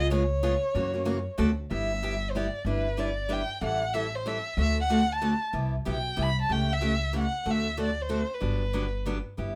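A lively swung waltz in three drives this short excerpt of acoustic string swing, with a woody, thumpy upright bass plucking gut strings and a bright, boxy parlour steel-string guitar picking the accompaniment from the first beat. Over them a single dark violin carries the melody, bowed with a soft attack, expressive vibrato and sliding portamento, sitting close and up front alongside the other two. A brief opening passage of dominant chords gives way at 1.7 seconds to a longer second section that settles onto G6 and winds toward Gmaj7, all in a light reverb.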